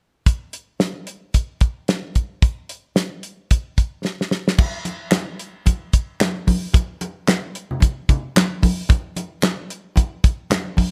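A dry, up-front 70s-style drum kit with a tight kick, medium-tuned snare, hi-hat, handclaps and crash cymbal drives this playful funk groove with a swung sixteenth feel, playing a fill from 4.0 to 4.6 seconds before ringing, softly played congas join at 4.6 seconds and carry on beneath the kit until the cut at 10.9 seconds, the whole mix sitting in a light reverb.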